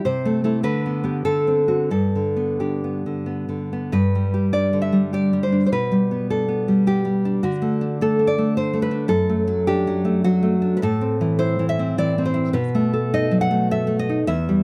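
A full-bodied, fingerpicked nylon-string guitar spanning E2 to F#5 plays alone and up front in this melancholic, intimate romantic fragment in 3/4. Its rubato phrasing moves through Am/C, G/D and D7 before settling on G. At 3.9 s the opening phrase gives way to a longer passage that travels through G/B, D/F# and Am to close on B7, with finger squeak adding a human touch. Close, detailed microphones capture the instrument inside a moderate recital hall reverb.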